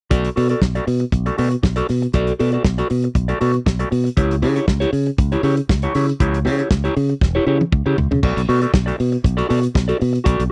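From the first moment, a mellow, clean electric guitar with a phaser, a warm, direct fingered electric bass and a muffled, lo-fi soul drum kit with dark cymbals, a tight kick and a rolled-off top all sit up front in a dry, close 1970s-style studio sound, laying down a sultry, danceable disco groove over Bm7 and Em6, with a drum fill from 7.2 to 8.2 seconds leading into a new section back on Bm7 before this cut from a longer piece ends.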